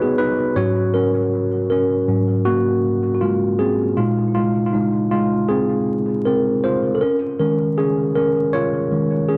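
A melancholic, reflective hip hop fragment in Bb minor, cut from a longer piece, moving at 79 BPM in 4/4 with a lazy 16th-note swing. A tine electric piano carries it alone from 0.0 to 9.4 seconds, ranging from Ab2 to Eb5 and sitting up front in the mix with a worn, slightly out-of-tune character that still comes across warm, clean and direct. Its tone is shaped by cassette tape and a low-pass filter, and a dub echo trails behind its notes. The harmony drifts through suspended ninth chords, starting on Db9sus4 and passing through Ab9sus4 and Bb9sus4 before settling on Eb9sus4 at 7.0 seconds. A wet spring reverb and a haze of vinyl crackle fill out the echo-heavy mix.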